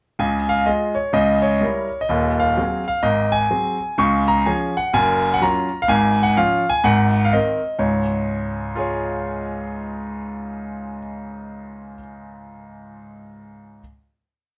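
Exuberant and swinging, this short stride piano piece moves at 126 BPM in 4/4 with swung eighth notes, set in D-flat major. A bright grand piano plays alone from 0.2 to 13.8 seconds, spanning a broad range from the low Eb1 to Db6, carrying a single-line melody over a stride bass. Its tone is brilliant and polished, placed up front with an intimate, present sound, long sustain and audible action noise from the instrument. The harmony passes from Db through a diminished chord and an Ab7 over Eb, then on to Gb and an Abadd9 before returning home. After the opening section, a final Db chord arrives at 7.8 seconds and rings out until 11.6 seconds. Moderate studio reverb gives the room a natural sense of space, with the feel of a live performance.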